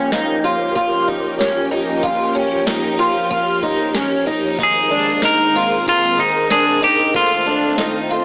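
This short dream pop excerpt opens with a picked twelve-string acoustic guitar playing shimmering, octave-doubled arpeggios up front, set against a phased string machine whose swirling, warbling sawtooth chords carry ensemble chorus and a soft attack. A booming analog drum machine enters at 0.1 s with a deep kick, crisp snare and metallic hats, overdriven and sitting low in the mix as if re-recorded in a small room. The mood is ethereal and dreamy at 94 BPM in a straight 4/4, moving from Bbm6 to Abadd9 and then F7. At 4.6 s a clean, twangy electric guitar takes up the melody with analog delay, the loudest voice in the arrangement. Light reverb frames a dry, gritty hardware sound with a small speaker character.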